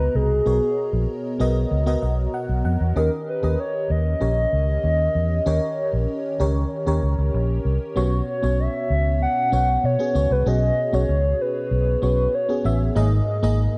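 1980s-style pop at 96 BPM in a straight 4/4, this nostalgic yet urgent excerpt moves from Bmaj7 to D#7 and then shifts at 8.0 s to Bsus2, closing on G#sus2. A hollow, woody, clarinet-like synth lead carries the melody with soft attack, vibrato and chorus-phaser shimmer, over a lush, dreamy FM electric piano with a soft pad layer that adds a fill from 1.7 to 3.0 s. A round, punchy, foam-muted fingered electric bass sits up front, all within a dark production and light digital ambience.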